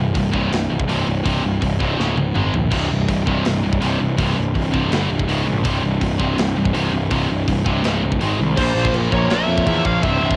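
Aggressive and relentless, this heavy metal clip runs at 164 BPM in a straight 4/4 and is cut from a longer piece, carrying the sound of a home recording on cassette with little reverb. Two bright rhythm guitars, one overdriven and one scooped and high-gain, churn out the riff from the background over power-chord movement between C5, Db5, Ab5 and G5, and both carry cassette tape coloring. A growly, fuzz-laden picked bass sits up front with overdrive, while a tight acoustic drum kit with a medium-tuned snare and rolled-off top enters at 0.2 seconds and throws in a fill just before a very quiet, double-tracked fuzz guitar joins the riff at 2.7 seconds. At 8.6 seconds the music shifts to a Bbm chord as a distorted lead guitar, treated with cassette tape, takes the melody, shadowed by a faint, bright second lead line beneath it.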